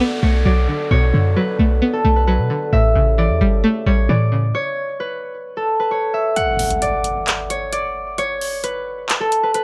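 A bright, ringing concert harp carries the melody through this eerie, dark hip hop and trap excerpt, its fingerpicked line sitting up front with a low-pass filter and plate reverb. Set at 132 BPM in 4/4 with a half-time feel, the opening pairs the harp with a twangy, warbling resonator pluck of vintage, string-like character, treated with chorus and a filter sweep, while a distant, roomy French horn section holds dark sustained chords with light vibrato. A deep, boomy 808-style bass with a clean sine tone enters at 0.2 seconds, and the harmony sits on Bm7 under an electronic downlifter before moving to A7 at 2.7 seconds. The bass and horns stop at 4.5 seconds, leaving a break before an impact hits at 6.4 seconds and a trap drum kit arrives with handclaps and metallic hi-hats while the kick stays muted. The production is dark and warm, with a moderate studio reverb framing the parts.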